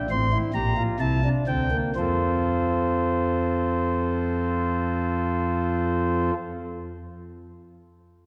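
A single chamber organ on a principal stop opens the recording, sounding up front with a chiff at the start of notes and a smooth, warm tone. This short cut from a longer baroque-style fugue in three voices carries a joyful yet stately mood in a straight 12/8 metre, reaching from deep bass notes to bright upper registers. The opening bars slow down over a C7 chord that settles onto F at 1.9 seconds, where a new section begins. The organ plays alone until 6.3 seconds, wrapped throughout in a resonant church reverb with a long three-second decay that keeps ringing through to the end. The result feels intimate in its voicing yet spacious in its surroundings.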